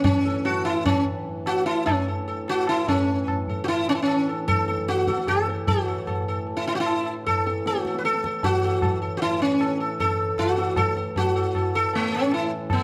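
A plucked acoustic sitar leads this radiant, devotional Hindustani classical excerpt, its round, buzzing tone shimmering with sympathetic strings as it carries the melody up front between A3 and B4. Beneath it, a hand-pumped harmonium holds a reedy, breathing drone from A2 to E3, close-miked, dry and full. Low-tuned tabla with a short ring supplies the percussion, sounding as if played in a small room. The music moves in 7/4 at around 152 BPM with a straight feel and speeds up from start to finish. An opening passage gives way to a new section at 2.9 s, and the recording sits in a moderate recital-hall reverb, cut from a longer piece.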